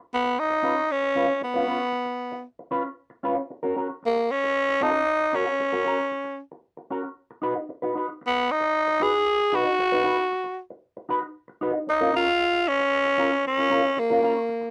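Disco at 115 BPM with a joyful, celebratory mood, cut from a longer piece and captured in a dry, close 1970s-style studio sound with light reverb. A raspy, growling tenor saxophone carries the up-front solo melody with light vibrato, while a mellow, dark electric guitar with wah plays clean, fingered accompaniment. The harmony moves from C#7 through a rootless D#m7 and B before settling on A#m at 11.9 seconds.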